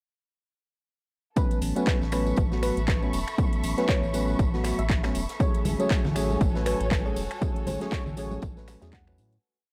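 Sunny and soulful, this short deep house piece opens straight into its drop at 1.4 seconds with a swung sixteenth-note lilt. A punchy, overdriven electronic kick sits up front in a four-on-the-floor pattern, joined by a house kit of metallic hats, finger snaps and handclaps, a very quiet looped breakbeat from an airy studio kit with a high-tuned snare, and a jingly tambourine played in sixteenths. A round, deep analog bass arrives at 1.6 seconds with a dotted rhythm, pumping against the kick alongside clean tine electric piano stabs that move one chord shape in parallel, while a distant string section drifts through slowly shifting chords with portamento. A velvety sawtooth lead repeats a chorused, tape-echoed riff in the background, and from 2.6 seconds a gentle, tine-like FM pluck adds short answering phrases through analog delay. A clear violin section holding a single high note enters at 5.4 seconds as the harmony turns, soft-handed congas follow at 5.6 seconds, and a fade-out begins at 6.7 seconds, all set in a small, dry room with gritty transformer saturation.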